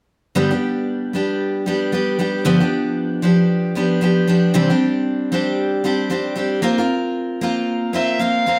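Sunny, easy-going pop at 115 BPM with a light 16th-note swing in G major, where an up-front picked dreadnought acoustic guitar picks through G, G7, Csus2 and Bbsus2 from 0.4 seconds, and a single dark, smoothly bowed violin with vibrato slips in at 7.9 seconds just before this short fragment ends, all set in a wet studio reverb.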